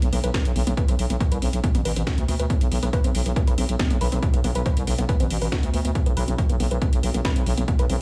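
A hypnotic, intense stretch of driving peak-time techno at 139 BPM in B phrygian opens with a tight, nasal, detuned sawtooth synth riff carrying chorus, tube saturation and digital delay, a growling FM bass up front, a deep, dark ambient pad drone holding B2, and a drum kit of cracking snare and metallic hats, with the synth, bass and hats all pumping from sidechain compression, before a punchy, layered electronic kick lands at 0.3 s, the mix set in a digital studio reverb.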